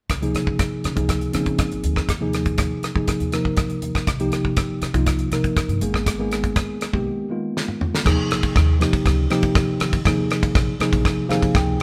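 A straight 4/4 groove from a damped, dry 70s drum kit, with a fat snare and tight kick placed up front, drives this soaring, slick stretch of electric jazz fusion cut from a longer piece, with the kit adding a fill at 7.6 seconds. A woody pizzicato upright bass on steel strings sits underneath, while a mellow tine electric piano, worn and slightly out of tune yet clean and direct, carries chords such as Dbmaj9 and Abmadd9 before its own fill at 11.0 seconds. The band plays live together in a stone room with moderate reverb.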